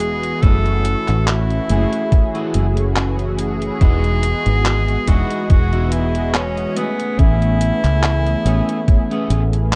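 A thumpy electronic kick that sits up front from 0.4 s and a detuned 8-bit drum machine's tape-softened handclaps and hi-hat set a slow, swung 71 BPM groove under a foam-muted fingered bass with tube saturation in this woozy, nostalgic vaporwave fragment in E major, where mellow detuned sawtooth synth brass with a filter sweep and analog chorus holds F#m9, Emaj9 and Amaj9 chords, a picked, slightly broken-up electric guitar riff drifts in a lush chorus, and a clear tenor saxophone with light vibrato and tape echo carries the melody, all wrapped in a dark digital ambience.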